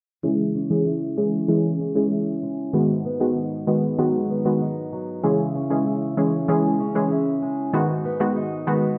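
A straight 4/4 dancehall groove at 96 BPM sets a bouncy, hypnotic mood in C# minor, cycling between C#m and G#m7 throughout this short excerpt. Up front, a bright, detuned analog pluck built from sawtooth and pulse waves with a noise layer carries the accompaniment with a fast attack and decaying tail, colored by chorus and a low-pass filter. Beside it, a dark, boxy parlour-style steel-string acoustic guitar fingerpicks arpeggios under its own low-pass filter, while a filter sweep runs from 0.2 to 9.0 seconds in a light reverb with studio ambience.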